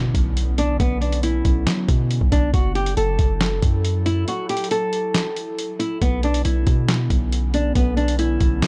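Hip hop with a trap edge, this eerie, menacing clip moves at 138 BPM in a half-time feel, set in B minor and cut from a longer piece. A fingerpicked nylon-string guitar carries the melody up front, its fresh-stringed tone softened by a low-pass filter, while a warbling, detuned tape-like pad sits in the background with chorus and its own reverb, adding a nostalgic, lo-fi haze. Underneath, a punchy, heavy 808-style bass with a fast attack and decaying sine tone anchors the low end. A gritty, pitched-down boom bap drum kit enters at 0.1 seconds with a thumpy kick, medium-tuned snare, handclaps and hi-hat, compressed and tape-colored as if re-recorded in a small room. A barely audible electronic impact opens the track, a break arrives at 4.3 seconds, and the harmony moves between Bmadd9 and F#m7 in a dark, dry, warm mix.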